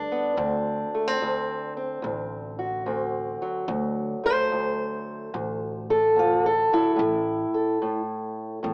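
Swung eighths at 73 BPM in 4/4 drive this rollicking, gritty slice of acoustic country blues in D mixolydian, where a dark, boxy, fingerpicked old ladder-braced acoustic guitar with plate reverb carries the melody up front over a growly, woody pizzicato upright bass, moving from D7 to A5 at 7.0 seconds, all heard through a tight, wet booth ambience and the worn, warbling pitch drift of old cassette tape played on a small speaker.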